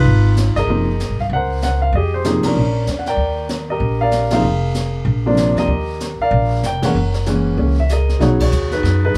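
Swinging and sophisticated, this short cut from a longer jazz piano trio performance moves with a swung eighth-note feel in four. The grand piano carries the melody from the opening, its intimate, up-front tone revealing audible action noise as it moves through rich extended harmonies such as rootless ninth chords, major sevenths with a raised eleventh, and minor ninths. Plucked upright bass with steel strings sits close beside it, woody and thumpy in the low register. The brush kit enters at 0.1 seconds, set lower in the mix, with dark cymbals, a high-tuned snare and a boomy kick captured in a small room. The trio hits shared accents at 2.4, 4.3 and 6.8 seconds, and light reverb lends the performance a natural sense of space.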